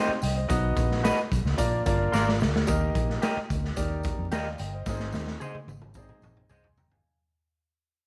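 A clear, intimate grand piano with audible action noise and twangy, slightly broken-up guitar stabs open this danceable, uplifting slice of 1960s-style soul, joined almost at once by a dark, round, foam-muted bass, a gritty, boomy garage drum kit in a pumping small room and a jingly tambourine in the background, with vinyl crackle and light reverb over the mix, drum fills at 2.1 seconds and again from 4.9 seconds, and a fade-out beginning at 2.7 seconds.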